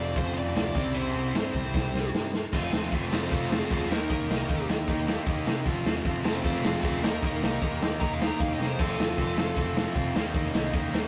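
Punk rock at 153 BPM in F mixolydian, this short, upbeat and rebellious clip opens in half time for its first 2.5 seconds before a drum fill kicks it into full stride. The raw garage drum kit sits up front with a punchy kick, a medium-tuned snare and crash and ride cymbals, its gritty, saturated sound rolled off on top and pumping in a small room. Underneath, a picked electric bass growls with an amped punch, while three overdriven rhythm guitars play riffs in the background: two bright picked guitars and a very quiet, double-tracked semi-hollow guitar with a hollow-body tone. Over them, a bluesy distorted lead guitar carries the melody until 9.9 seconds. The chords move between F, C and Eb, and the whole take has the rough, tube-saturated feel of a rehearsal-room recording with moderate small-room reverb.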